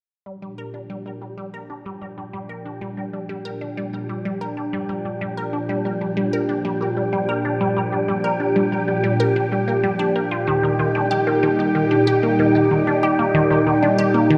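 A swirling, phased analog pad and a squelchy, resonant blip pluck fade in together at 0.3 s, the pad holding sustained chords up front while the pluck repeats a bright, sequencer-style riff through phaser and tape echo. This is hypnotic, cosmic space music in G minor at 94 BPM in a straight 4/4. A breathy, wind-like tuned noise texture fades in low at 1.9 s, and the harmony moves from Gm7 to Eb at 10.5 s, all within a lush plate reverb in this section cut from a longer piece.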